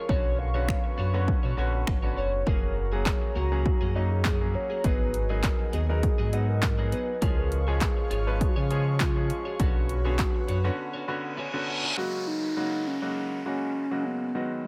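Upbeat, euphoric dance-pop, cut from a longer piece, with a hollow, woody clarinet-like synth lead carrying the melody through chorus and dub echo over a clear baby grand piano, an airy, breathy pad and a bright, twangy twelve-string electric guitar riff. A punchy analog drum machine with kick, hi-hat, handclaps and finger snaps sits up front beside a deep sub bass with octave, its pumping shared with the piano and pad. The drums and bass stop by 10.7 s for a break filled by the piano, and from 11.1 s a reverse cymbal and downlifter lead into the closing section of an echo-heavy mix.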